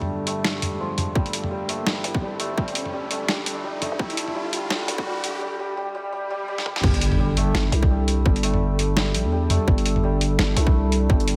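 An overdriven, hard-clipped electronic kick drum sits up front in this cinematic, spacious half-time drum and bass cut from a longer piece, running at 169 BPM in 4/4 with a swung sixteenth feel and entering at 1.2 seconds. Alongside it, a gritty, pitched-down boom bap sampler-style kit with a medium-tuned snare, hi-hat, toms and crash cymbal also sits up front and keeps the groove. A growling, buzzy 808-style bass carries the low end alongside a moody, nasal analog pad of detuned square and sawtooth tones, sustained chords thickened by chorus, vintage 12-bit sampler grit and sidechain pumping. A bright, shimmering santur plays arpeggios through a low-pass filter and tape echo, and both it and the pad are swept by a filter during the build-up over the first 6.8 seconds. Background electronic effects add a riser, then a swell, while a drum fill leads into the drop, which lands at 6.8 seconds with an impact. 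Light reverb lends the mix a sense of space.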